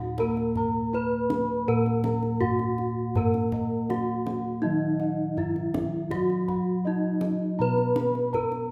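Bronze metallophones and round, beating bossed gongs open this hypnotic, shimmering Javanese gamelan excerpt: a ringing wooden-mallet melody sits up front over a dark, mellow accompaniment and high metallophone arpeggios with paired-tuning beats, while soft, airy gong arpeggios and a deep kendang join at 0.2 seconds, inside a reverberant recital hall.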